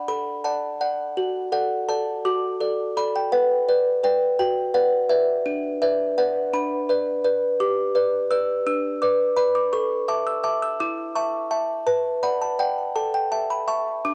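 In 6/8 at 56 dotted-quarter beats per minute, this dreamy, tender classical lullaby excerpt in D major features a lone, tinkling music box, delicate and bright and placed up front, plucking from D4 to E6 through a cassette-tape haze and analog delay, with light reverb and small-room ambience lending a homespun intimacy as the harmony moves from D through B minor and G to A and back toward B minor across its 14.1 seconds.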